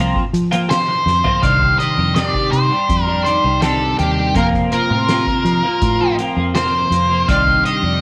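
A straight 4/4 pulse at 82 BPM drives this hypnotic, mysterious psychedelic rock excerpt in C dorian, where a bright, twangy, double-tracked twelve-string electric guitar riff with flanger circles Fsus4 and Cmadd9 over a round, foam-muted fingered electric bass, a soft-mallet drum kit with a boomy kick, fat snare and rolled-off top enters at 0.2 seconds and plays a fill just before 1.4 seconds, and an up-front octave-fuzz lead guitar joins at 0.7 seconds with a dark, distorted melody carried by slapback echo, all set in a moderate spring reverb.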